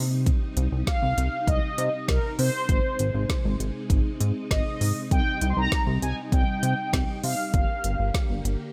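A straight 4/4 pulse at 99 BPM drives this short synth-pop excerpt in C minor, tuned to A4 = 438 Hz, with a driving yet melancholic mood. The deep house drum kit enters at 0.3 seconds, pushing a deep kick, woody snare and smooth hi-hats to the front, while a chorused synth bass of detuned sawtooth and pulse-wave tones with a filter pluck anchors the low end with a glossy, retro sheen. Beneath them, an ensemble organ-string pad holds soft-attack, organ-like chords through an ensemble chorus, moving from Cm to Ab, back to Cm and on to Gm. From 0.9 seconds a mellow synth brass carries the melody between Bb4 and C6, brassy and round, with vibrato, ring modulation and a filter sweep, coloured by chorus and tape echo. A digital ambience surrounds the mix, and the passage is cut from a longer piece.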